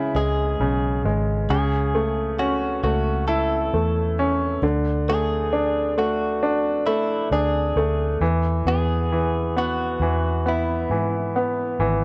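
A slow, straight 4/4 pulse at 67 BPM carries this tender, heartfelt pop ballad in E major, cut from a longer piece and moving through C#5, A/C#, D and E chords. A bright, brilliant grand piano with short sustain and plate reverb sits up front as accompaniment alongside a dark, round, foam-muted fingered electric bass that is also up front, while a clean, compressed direct-recorded electric guitar picks the melody until 11.8 seconds. The whole take has a dry, gritty cassette-tape character in a small room.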